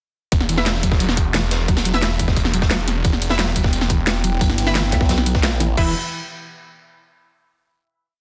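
A dense, heavily limited modern master with light reverb carries this tense, mechanical piece of dark technical drum and bass, where a snarling, distorted saw bass growls up front over an overdriven electronic kick, a tight drum and bass kit with a cracking snare, bright hats and crash, and a gritty looped breakbeat tucked into the background. A clean, mellow electric guitar sequence drifts against the bar through dub echo beside bold, punchy orchestra-hit-like stabs. A moody analog pad arrives at 3.0 seconds, and a wobbling formant-sweep bass joins at 4.9 seconds before the band accent at 5.4 seconds and a closing chord at 5.8 seconds.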